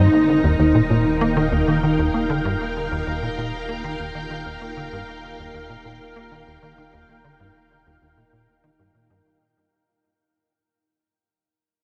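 A lush, vintage string machine holds a sustained Ebadd9 chord with slow-attack ensemble chorus, while a tight, punchy sequencer bass drives a sawtooth-and-square riff with ring modulation, filter pluck, chorus and delay, all over a deep, round sine sub bass thickened by tube saturation. This expansive, luminous piece of sequencer-driven space music moves at 97 BPM in a straight 4/4. The whole texture sits in a huge ambient reverb with the character of cassette tape, and the synth bass, the sub bass and the overall mix fade out across the 9.4-second cut from a longer piece.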